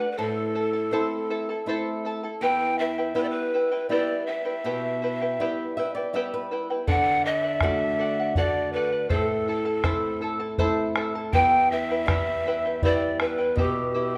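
A straight 3/4 lilt at 81 BPM carries this festive yet melancholic Andean folk excerpt in E minor, where breathy cane pan pipes with a soft chiff sing the melody up front over a shimmering, fingerpicked charango and a boxy flamenco guitar that adds a nylon-string fill at 5.4 seconds before a round bombo joins at 6.9 seconds, all set in a moderate recital hall reverb.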